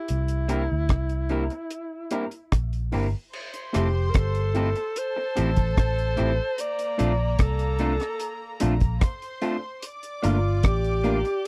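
A dry, close 1970s-style studio sound frames this romantic, sweet lovers rock reggae excerpt at 74 BPM in F major, where a mellow, up-front alto saxophone sings the melody with subtone, scooped notes and tape echo over a dark, foam-muted fingered bass, a deep drum kit with a tight kick and rolled-off top, a worn, slightly out-of-tune tine electric piano and slightly broken-up, lo-fi guitar stabs from a small old amp, while a warm, bowed string section with gut-string tone joins as a second line at 3.3 s as the chords move from C7 through Fmaj7 and Bbmaj7 to Gm7.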